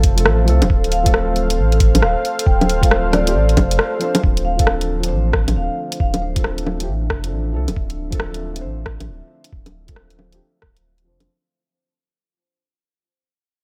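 A ringing, band-limited vibraphone carries the melody through analog delay from 0.9 to 6.6 s in this ghostly, nocturnal future garage excerpt, floating over sustained chords from a detuned, chorused analog pad, a round dub sub bass and a gritty, felt-muted upright piano with tape echo, all three pumping to the sidechain, while a muffled, thumpy kick and an up-front garage kit of bongos, bright hi-hats and rim clicks swing on 16ths before a brief break at 3.8 s gives way to a fade-out and a filter sweep on the piano.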